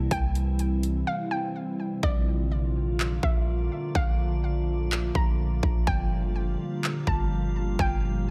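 Bathed in light reverb, this blissful, dreamy stretch of atmospheric cloud-rap moves at 125 BPM in a half-time 4/4 feel in Bb lydian, with a glassy FM pad holding sustained chords under ensemble chorus and sidechain pumping, a deep, boomy 808-style bass, a hollow, nasal square pluck carrying the melody through chorus and delay, an overdriven big-room dance kit of punchy kick, handclaps and hi-hat that reaches a break at 1.1 s, after which the hi-hats stay muted from 2.0 s, and a calm drifting glass-harmonics texture entering at 2.7 s, all over chords shifting from C to Bbmaj7 to Gm7.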